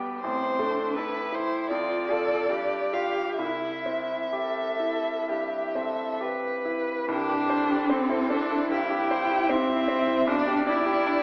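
In a rubato 4/4 that drifts between 62 and 82 BPM, this slow romantic movement for piano trio unfolds in C major with a warm, lyrical mood, heard as a fragment cut from a longer piece. A bright baby grand piano carries the accompaniment from the outset, brilliant and intimate, with the soft clatter of its action audible. A rich, focused cello sings a second line with vibrato, moving between B3 and B4. At 0.2 seconds a dark violin takes up the melody, bowed with a soft attack, expressive vibrato and gliding portamento, its top end smooth. The harmony moves from A minor through D minor and G to a settled C major, turning toward G over B near 10.3 seconds. A reverberant recital hall surrounds the trio, while vinyl crackle and a thin AM-radio coloring give the whole an aged, nostalgic cast.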